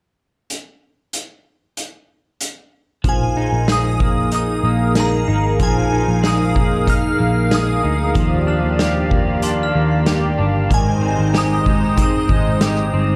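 Blissful and ethereal, this dream pop passage moves at 94 BPM in a straight 4/4, cut from a longer piece. A vintage drum kit opens alone at 0.5 seconds, its punchy kick, medium-tuned snare and hi-hat sounding up front in a small, pumping room with a rolled-off top. At 3.0 seconds the band arrives over a Bb7sus4 chord: a slightly broken-up, twangy electric guitar fingers arpeggios through analog chorus, digital delay and shimmer reverb, while a dark, round, foam-muted picked bass adds punch beneath. A hollow, flute-like pad holds soft sustained chords with chorus and shimmer, and a dreamy FM bell with a halo carries the high melody, its fast attack decaying into a long release through ensemble chorus and delay. The harmony shifts to Ebmaj9 and then Abmaj7, and from 8.5 seconds a sparkling glockenspiel struck with brass mallets rings softly in the background through delay and shimmer reverb. 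A huge ambient reverb with a 3.8-second tail wraps the whole mix in a glowing haze.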